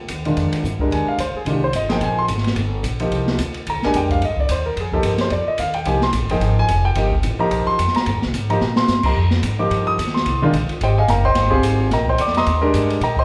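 An intimate grand piano sits up front in this excerpt of modal jazz, its natural tone carrying long sustain and a touch of audible action noise as it comps between Eb3 and Eb6. The mood is intense yet cool, swinging briskly at 218 BPM in 4/4 in F dorian, with the harmony moving between Fm11 and Cm7. Beneath the piano, a woody, bright pizzicato upright bass on steel strings holds down the low end from F1 to Bb2. The acoustic drum kit sounds dark and smooth, with shadowy crash, ride and hi-hat cymbals, a medium-tuned snare, a punchy kick and a rolled-off top, and a drum fill arrives at 8.6 seconds. The band plays live together in a large studio with moderate reverb, giving this passage from a longer piece a shared-room feel.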